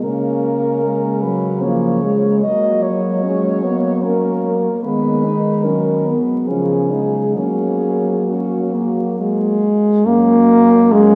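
Heard through vinyl crackle and a vast, echoing cathedral reverb, this tender, lyrical classical fragment for horn quartet moves in a rubato 3/4 at 64-76 BPM in F# major, with a warm, distant solo horn singing the melody with vibrato, a dark, smooth-topped horn carrying the second line, a mellow, punchy horn up front in the accompaniment, and a close-miked horn holding the bass.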